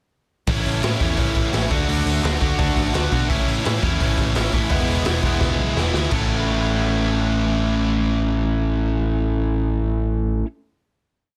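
A distorted electric guitar leads this short, rowdy punk rock piece, bright and up front, its double-tracked, picked barre chords driving in eighth notes from 0.5 seconds at a brisk 170 BPM in A major. Beneath it, an overdriven picked electric bass adds a growly, punchy eighth-note line, moving through A, D, A and E before everything lands on a final A chord at 6.1 seconds. The raw garage drum kit has a saturated, gritty character, with a boomy kick, a medium-tuned snare, hi-hat and crash cymbal pushing a fast punk groove in a small, pumping room. A drum fill from 5.4 seconds leads into that closing chord, after which the drums stop and the guitar and bass ring on until just past 10 seconds. The sound is dry, dense and heavily limited, with audible lossy compression artefacts adding to its upbeat, rough-edged energy.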